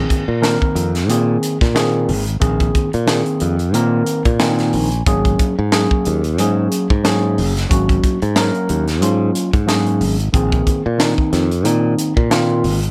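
A gritty, overdriven tine electric piano and a bright, growly fingered electric bass open this nocturnal, slick electric jazz fusion cut from a longer piece, joined almost at once by a crisp drum kit with a high-tuned snare, punchy kick and hi-hat in a small, pumping room. The piano, pushed through a combo amp with subtle chorus and plate reverb, moves over suspended ninth chords with a swung sixteenth-note feel, adding a fill between 4.1 and 5.1 seconds. All three parts sit up front under light reverb, the bass direct and punchy.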